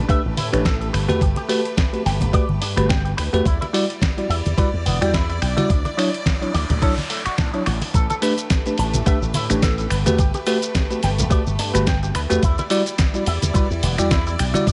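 A growly, punchy slap bass run through an envelope filter drives this groovy, sensual nu-disco excerpt, set against an up-front, thumpy electronic kick and a gritty, compressed sampler-style kit of snare, hi-hat, shaker and finger snaps, with soft-handed congas and cabasa sitting in the background from 0.4 seconds. A bell-like tine electric piano with dub echo and a twangy, clean picked guitar riff, filtered and treated with analog chorus and dub echo, ride over lush ninth chords. A rich, bowed symphonic violin section holds sustained chords with vibrato and sidechain pumping, while a faint noise sweep passes between 6.2 and 7.9 seconds in a light digital ambience.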